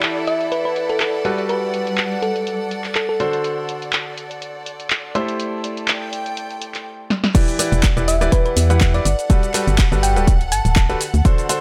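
Light reverb and a digital ambience surround this short cut from a longer piano house track, with a bittersweet, soulful mood in E minor at 123 BPM and a gentle 16th-note swing. A brilliant grand piano with short sustain plays the riff over Em7, Gmaj9, D7 and Am7 chords, pumping against the beat alongside an intimate chamber string section bowed sul tasto with light vibrato and a soft attack. A punchy, tape-warm analog drum machine with a punchy snare, handclaps, hi-hat, cabasa and crash cymbal runs throughout, its percussion low-pass filtered and its snare, clap and hats set in a short room. A round, tine-like synth pluck in the manner of a thumb piano carries the melody from 0.3 to 3.2 seconds and returns at 8.1 seconds, softened by chorus and tape echo. After a drum fill, the drop lands at 7.3 seconds with an up-front, layered electronic kick, and at 7.7 seconds a hollow, organ-like FM bass with tube saturation adds a dark, percussive low end that pumps with the groove.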